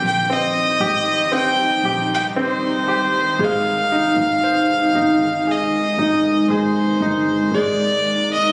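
A straight, unhurried 4/4 pulse carries this short cut from a longer pop piece, its mood emotional yet hopeful. A bowed violin takes the melody up front, its earthy, biting tone rounded off by a smooth top and light vibrato, with delay trailing behind its line. A brilliant, polished grand piano supplies the accompaniment with a short sustain, while a granular cloud pad spreads blurred, detuned sustained chords with a slow attack, long release and its own built-in reverb. Underneath, a bowed double bass adds a rich low line, expressive with vibrato, a soft attack and portamento. The harmony moves from C minor to A-flat at 3.4 seconds and settles on A-flat sus2 at 7.5 seconds. All four parts play throughout, captured on a phone in the room and then given studio reverb and compression.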